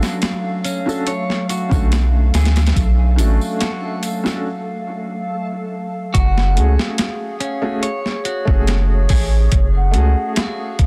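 A gritty, overdriven boom bap sampler kit with a thumpy kick sets a straight 71 BPM trip hop groove in 4/4, carrying this melancholic, hypnotic excerpt from a longer piece in F# harmonic minor, where a felt-muted upright piano with audible action noise, tremolo and tape echo, a warbling lo-fi pad with chorus and 12-bit sampler grit, a clean picked electric guitar playing arpeggios through a filter sweep, a reversed granular texture and background tambourine and triangle fill the opening until a round, dark analog bass arrives up front at 1.7 seconds, and after a break at 4.5 seconds a hollow, wooden baroque flute with vibrato and tape echo takes the melody at 6.2 seconds as the chords move from Bm7 to F#madd9 in a dense, heavily limited, dry master.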